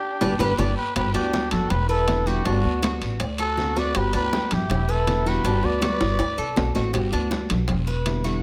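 Warm and danceable, this brisk Cuban son and guajira cut runs at 161 BPM in G major, moving through Gmaj7, Em7 and D7 changes from a longer piece. A muted trumpet with a cup mute carries the melody up front, veiled and growling in a jazz style with light vibrato and scooped notes, while a dark, lush violin section traces a second line in the background with portamento until 6.8 seconds. A warm, fingerpicked nylon-string guitar and a mellow, metallic Cuban tres with doubled strings fill out the harmony, the tres playing arpeggios. Underneath, a woody, thumpy upright bass with gut strings sits up front. Ringing high-tuned congas, round low-tuned bongos, metal-shell timbales and a raspy, distant guiro keep the groove, with drum fills at 0.4 and 6.0 seconds, the first landing during an opening band accent. The sound is close and detailed, with little reverb.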